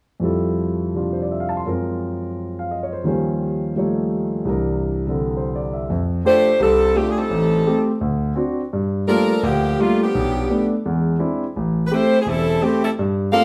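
A warm concert grand piano opens this energetic, swinging jazz excerpt in F major, setting an up-tempo 170 BPM groove in 4/4 with a swing feel. Playing accompaniment, the piano is natural and up front, with deep bass reaching down low beneath rich harmonies that move from Fmaj7 through Gbmaj9#11 and Eb13 to C9. At 6.3 seconds a bright saxophone section enters with the melody, close-miked and tight, with light vibrato and a crisp jazz-section sound placed up front. The second half shifts to a busier run of changes, including Am7b5, D7, Gm9 and Eaug7, before landing on Am7. The band plays live together in one large studio with moderate reverb, giving the performance a lively, cohesive room sound. The clip ends at 13.4 seconds, cut from a longer piece.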